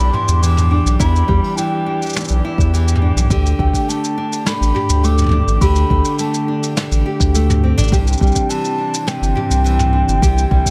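Wistful and intimate, this folktronica excerpt moves at a straight 104 BPM in 4/4 over Em7, Dsus4 and Cadd9, with a distant, hollow wooden baroque flute carrying the melody through digital delay and plate reverb. Fingerpicked nylon-string guitar arpeggios with audible finger squeak share that delay and plate, while a veiled, con sordino string quartet holds dark sustained chords with light vibrato in its own plate reverb. A round, deep analog bass sits up front beneath a small-room brush kit with a rolled-off top, and a soft, tape-warm electronic kick joins at 1.0 seconds.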